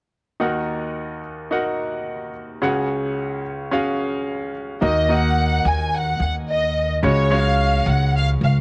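Expressive bowed violins with vibrato and portamento carry the melody from 4.8 s in this driving, earnest piano-driven pop excerpt in Eb minor at 109 BPM, entering alongside a woody pizzicato upright bass over a brilliant, polished grand piano that plays alone from 0.4 s, moving between Ebm and Gbsus2/Db, with cassette-tape colour and plate reverb on the piano and strings and a modest booth ambience framing the up-front home cassette recording.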